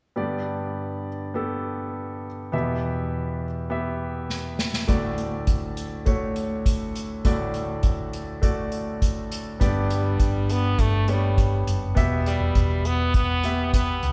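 Set at a steady 102 BPM in straight 4/4, this hopeful, anthemic piano-driven pop excerpt opens on a clear, intimate concert grand with audible action noise and long sustain, moving through G, Em and D before an up-front acoustic drum kit enters with a fill at 4.3 seconds, its tight kick and medium-tuned snare played with bundle sticks. Around 9.6 seconds a round, dark hollow-body electric bass joins, and moments later a stopped French horn takes the melody in a nasal, metallic classical style with light vibrato and a soft attack. A moderate concert hall reverb gives the whole piece a spacious, churchlike air.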